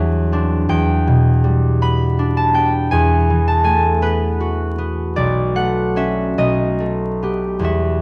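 A solo concert harp opens this mysterious, gentle classical passage, its fingerpicked strings ringing warm and up front across a span from B1 to B5 in a rubato 6/8 that drifts around 46-55 BPM on the dotted quarter. The harmony moves from D9/E through Em7, F#m11/E and Bm9 before arriving on Baug7 near 6.4 seconds, giving the eight-second fragment of a longer piece a mysterious colour. Close, detailed microphones catch the instrument within a moderate recital hall reverb, while vinyl crackle sits beneath the sound.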